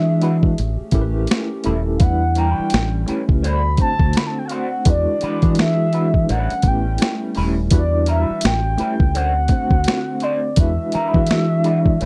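This is a soulful, introspective R&B and neo-soul excerpt in E minor at 84 BPM in 4/4, with a 16th-note swing of 60% giving it a loose, unhurried sway. A mellow, horn-like synth lead carries the melody from the start, its round, warbling vintage tone softened by chorus and a slapback echo. Beneath it, a worn, slightly out-of-tune tine electric piano plays accompaniment with medium tremolo, and a hollow, airy, flute-like pad holds sustained chords with chorus in the background. A deep dub fingered electric bass sits up front with a dark, punchy sound. At 0.2 seconds, a gritty, compressed boom bap sampler-style kit with a thumpy kick, high-tuned snare, hi-hat and finger snaps joins, along with a slightly broken-up, lo-fi electric guitar playing a second line through wah and lush chorus. The chords cycle through E9, A9, Em9 and D7 in a dry, close 1970s-style studio sound with little reverb.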